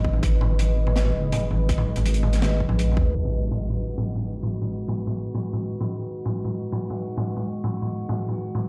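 A deep, wobbling sine-and-triangle bass anchors the opening 3.1 seconds of this tense, dark half-time drum and bass cut in G# minor at 164 BPM, joined by a tight, overdriven electronic kick and a crunchy, gritty breakbeat kit of hi-hat, snare and toms under a moody, detuned sawtooth pad with sidechain pumping, before an up-front impact hits at 3.2 seconds and an eerie, nasal, metallic FM drone enters at 3.7 seconds, all heard through a big sound system in a bare room with large studio reverb and a low-pass filter.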